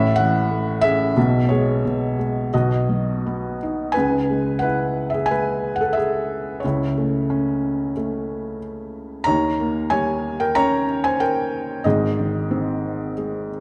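A felt-muted upright piano opens alone at 0.0 s, its soft, mellow tone sitting intimate and up front in this lyrical classical solo piece. The mood is sunny and hopeful, moving at 91 BPM in 4/4 with a rubato feel that lets the phrasing breathe. Early harmonies pass through A, E6/B and B before the music settles into C# minor at 3.9 s, where a new section begins on C#m7. From there the chords move through A/C# and D#7 before arriving on G# near the close, the piano ranging from G#1 up to A#5. A concert hall reverb with a long 2.3-second tail surrounds the instrument, and the overall production is dark. This short passage is cut from a longer piece and runs to 13.6 s.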